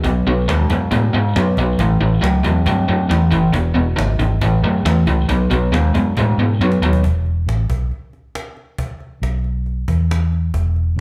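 Driving and gritty, this short cut from a longer blues rock and southern rock piece features a power trio playing live together in one large studio room with a moderate reverb. A crunchy, double-tracked overdriven electric guitar sits up front with a picked riff that moves over B5, A, E, A and B before dropping out at 7.0 seconds, as the harmony lands on E5, while a dark, round, foam-muted fingered bass punches alongside it until 11.0 seconds. Behind them, a woody acoustic cajon with faint snares keeps a straight 4/4 and plays a brief fill from 6.6 seconds.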